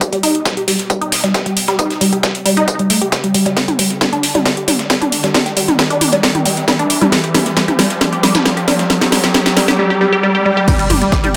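This excerpt of driving peak-time techno at 135 BPM opens straight into a build-up, with a punchy, layered electronic kick, an up-front techno kit of cracking snare, metallic hats, ride, crash and toms, and a gritty, compressed sampler-style soul kit of hi-hat, fat snare and tambourine sitting in the background. A juicy, squelchy blip pluck enters at 0.1 s, playing a resonant, detuned riff over a G5 chord, coloured by phaser, overdrive, dub echo and sidechain pumping, while a filter sweep works across the synth arpeggio sound. An electronic riser climbs beneath it all, a drum fill runs from 3.6 to 9.8 s, and a swell gives way to an impact at 10.7 s. Just after, at 10.9 s, a tight sawtooth sequencer bass arrives on a low G with tube saturation and a fast-attack filter pluck. The mood is relentless and hypnotic, set in an echo-heavy mix with wet spring reverb and a small room ambience on the drums.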